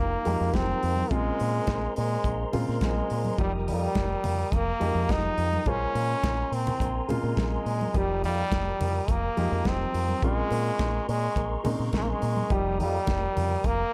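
Disco at 105 BPM in F minor, glamorous and sultry, where a brilliant, up-front trombone sings the melody with light vibrato over warm grand piano, a soft, flute-like tonewheel organ with chorus vibrato and key click sitting in the background, a fingered electric bass through an envelope filter, a dark soul drum kit with a punchy kick and very quiet, bright congas entering at 0.3 seconds, all moving between Fm11 and Bbm9 before closing on F9sus4 in this short cut from a longer piece.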